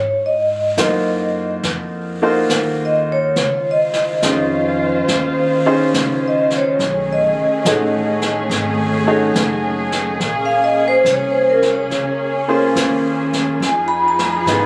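A ringing, metallic vibraphone carries the melody through this wistful, melancholic swung jazz ballad in a club, with a woody pizzicato upright bass from the start, a bright upright piano and brushed drums joining at 0.8 seconds, and a veiled, muted string section adding lush bowed chords from 3.3 seconds, all caught dry by a phone in the room.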